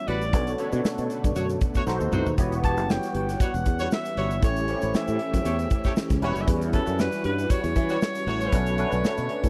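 A dry, close small-room recording with a 1970s studio character frames this bittersweet, urban slice of polished 1980s jazz-funk pop, lightly swung at 117 BPM in E dorian. A breathy, whispered alto saxophone carries the melody from a distance over barky, lightly overdriven tine electric piano with chorus, a silky, very quiet string machine, and a punchy horn section with tape echo playing a second line until 8.6 s. Underneath, a growly fretless bass with lush chorus and an airy, up-front drum kit hold the low end, with a drum fill at 1.9 s, while a grainy tube shaker sits in the background as the chords move through Bm9, B7b9, Em69 and A7.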